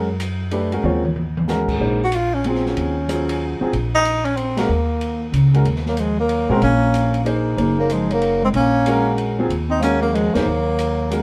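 A breathy, whispered tenor saxophone carries the melody from 2.0 s in this intense, searching modal jazz excerpt in Eb dorian, swinging in a brisk 3/4 at 187 BPM over a single Ebm11 chord, with warm grand piano showing audible action noise, woody pizzicato upright bass on gut strings, a dark-cymbaled drum kit that plays a fill at 0.8 s, and a mellow subtone bass clarinet joining as a second line at 5.9 s, as the band hits accents at 4.5 and 10.3 s in a live room with a wet ambience.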